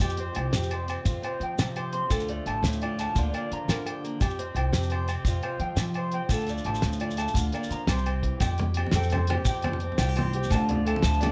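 Rolling in a straight 12/8, this sunny, danceable highlife guitar band excerpt sets a boxy fingerpicked archtop guitar beneath twangy, slightly broken-up electric guitar arpeggios with slapback echo, a woody, up-front pizzicato upright bass, a cloth-damped, thuddy drum kit with a fat snare and tight kick, ringing agogo bells and a grainy shekere, all in light reverb, before low-tuned, thick-skinned congas join at 8.4 seconds.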